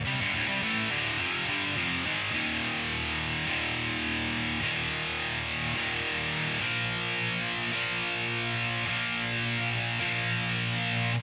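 A scooped, high-gain electric guitar plays alone and up front through this short metal excerpt, its bright, distorted, picked tone double-tracked for a thick, biting edge. The mood is aggressive and dark, set at 106 BPM in a straight 4/4, with the part ranging from D2 to Bb3. It opens on a D minor chord before shifting at 2.3 seconds into a half-time feel that lends the playing a heavier weight, moving from Eb5 to Bb5 at 6.6 seconds. Light reverb and a digital ambience surround the guitar, and the rough home demo mix gives the clip an unpolished, raw character. The guitar stops at 11.1 seconds, as the fragment is cut from a longer piece.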